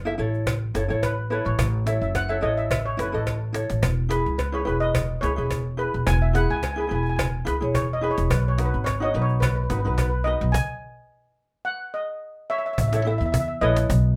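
Carefree and bouncy, this calypso excerpt in E major moves at 107 BPM with a light swing. A shimmering, airy lead steel pan, played with medium rubber sticks, carries the melody up front over thumb-plucked ukulele, a woody, thumpy pizzicato upright bass, snappy cajon played with soft hands and a metallic cowbell, with a drum fill at 3.3 seconds and a stop from 10.5 to 12.8 seconds, all set in a small room with moderate reverb.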